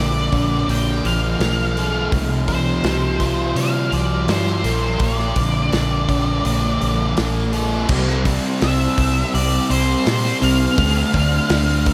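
A loose indie drum kit sets a straight 4/4 pulse at 83 BPM, joining at 0.3 s with a tight kick, a medium-tuned snare, dark cymbals and a mid-forward, small-room character. This is a dreamy, hazy shoegaze and dream pop rock piece cut from a longer work, with the whole mix soaked in a cathedral reverb of 6.0 seconds. Up front, a double-tracked, compressed fuzz guitar plays the riff through distortion and lush chorus, its dark, picked tone spanning Bb2 to Bb4. Above it, an octave-fuzz lead guitar carries the melody between C5 and G5 with a warm, picked sound run through distortion and analog delay. A vintage fingered electric bass, foam-muted, amped and round, anchors the low end from Bb1 to C3. The harmony drifts from Bbmaj7 to C7sus4 and back, then moves to C at 7.9 s and Dm at 10.8 s as the opening passage repeats.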